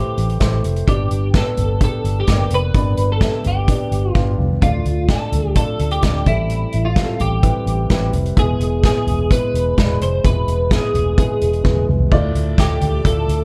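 A straight 4/4 pulse at 128 BPM drives this bittersweet, dramatic piano-driven pop fragment in A minor, where a soft-mallet drum kit with a punchy kick and two fills and a round, foam-muted vintage electric bass sit under a mellow, woody upright piano and a bright, twangy twelve-string electric guitar melody with ensemble chorus, before a bowed studio string section with vibrato and portamento enters in the background at 12.1 s on a Dmadd9 chord, within a lightly reverberant, dark production.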